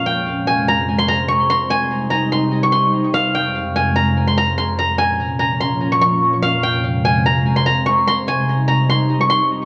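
The half-time feel at 146 BPM in 4/4 gives this short hip hop excerpt in F minor a slow, heavy gait, and the mood is melancholic with a menacing edge. A steel-string zither, played with fingerpicks, carries the melody up front between F5 and Db6, its silvery, ringing tone softened by a low-pass filter and trailed by tape echo. Beneath it, a glassy FM pad holds sustained chords around C3, with slow attacks and long releases, thickened by ensemble chorus and its own ethereal reverb. The harmony moves from Fm to Cm, back to Fm, on to Bbm, then Fm again before settling on Cm at 8.1 seconds. Both parts run together from the start to 9.7 seconds, set in a moderate spring reverb within an echo-heavy mix that leaves the whole fragment feeling haunted and suspended.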